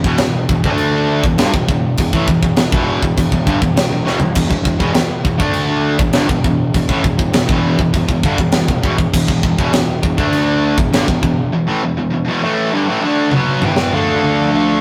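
Aggressive, epic heavy metal at 101 BPM in E phrygian, where an up-front overdriven guitar, a background distorted guitar and a very quiet double-tracked stack guitar drive the riff over growly fuzz bass and a tight, airy kit with bright cymbals and a high-tuned snare, with drum fills at 4.1 and 13.3 seconds before a dark overdriven lead and a background high-gain second line enter at 13.7 seconds, joined by a shimmering, chorused pulse-width pad on a closing D minor chord at 13.9 seconds, all in a rough rehearsal-room sound with light reverb.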